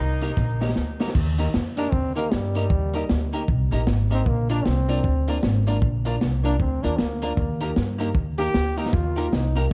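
A clear horn section with tape echo opens this joyful ska excerpt over a woody pizzicato upright bass and a dark upright piano's stabs, then gives way to a drum fill on a crunchy, saturated breakbeat kit alongside a twangy clean electric guitar with subtle chorus and a grainy cabasa, as a clear trombone solos from 1.8 seconds over a swung groove in a small room with vinyl crackle.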